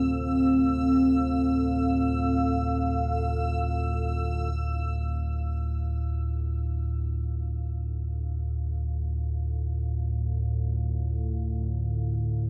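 A deep, rumbling drone of wave-folded sawtooth and triangle tones sits up front from the start, holding the low register between D2 and A2 with a slow attack, long release and its own built-in reverb, while a filter sweep moves across it through the first 4.5 seconds. This is a desolate, cavernous piece of dark ambient drone in free time and D minor, tuned to A4 = 444 Hz, heard as a fragment cut from a longer work. Above it, a moody analog pad of detuned sawtooth and triangle with a sub octave sustains chords on F between C4 and F5, its chorus thickening the sound, and it fades in over the second section from 4.5 seconds onward. A faint, bubbling texture of resonant sawtooth with random filter steps hovers high on E6, colored by chorus and reverb, and falls away at 4.6 seconds. The whole is bathed in a cathedral-like reverb with a 5.5-second decay, leaving the sustained tones hanging in an ominous, enveloping space.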